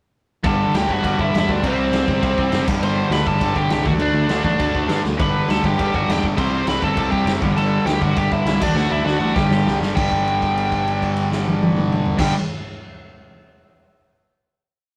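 At 0.4 s the whole band enters at once: a raw garage drum kit sits up front with a punchy kick, a medium-tuned snare, crash cymbal and toms, its dark, rolled-off top set in a bright stone-room sound, while a bright, direct picked bass drives eighth notes underneath. Two overdriven electric guitars play the riff in ringing chords, one mellow and set back in the mix, the other compressed, and a very quiet, double-tracked fuzz guitar pushes quarter-note power chords beneath them. Over the top, a biting lead guitar, overdriven and up front, carries a motif-based melody in sentence-like phrases, partly doubled in octaves. This rebellious, upbeat punk rock piece races along at 202 BPM in a straight 4/4, tuned to A4 = 444 Hz, cycling through G, C and D chords, with drum fills at 5.0 s and again near the close of the chorus. At 10.0 s the band lands on a final chord and a held note, all captured as a rough rehearsal-room recording with tube saturation and light reverb.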